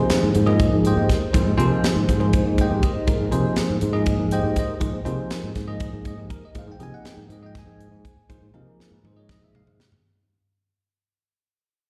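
A bell-like, bright tine electric piano sits up front, its clean, direct tone treated with phaser, plate reverb and slapback echo. This soaring, funky electric jazz fusion cut is taken from a longer piece and moves in an odd 7/8 metre with a straight feel, holding a single Abmaj9 chord. A fingered electric bass, direct and amped, adds a warm, up-front low end. A crisp, polished fusion drum kit with a high-tuned snare, tight kick, hi-hat and toms plays throughout. Ringing congas sound distant in the background, carrying a slapback echo until 3.0 seconds. Heard as a live gig through the venue's PA with recital hall reverb, the whole excerpt fades out while the drums close with a fill from 8.5 seconds.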